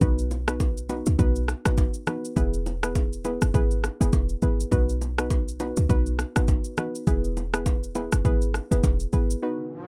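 The production is dark and warm with little reverb, and this short cut from a longer piece carries a sunny, joyful afrobeats groove with a lilting sixteenth-note swing. Up front, an electronic afro-pop drum kit lays down a deep kick alongside rim clicks and shaker. A short 808-style bass sits just as close: punchy and tight, with a sine tone, a noise layer, a fast attack and a decaying tail. A soft, round pluck blends triangle, sine and sawtooth colours through a filter sweep and chorus, offering gentle accompaniment as the harmony alternates between B and E. Acoustic congas and bongos sit in the background in a small room, adding light percussive texture. At 9.4 seconds the groove drops into a brief break, and an electronic riser enters at 9.5 seconds to close the clip.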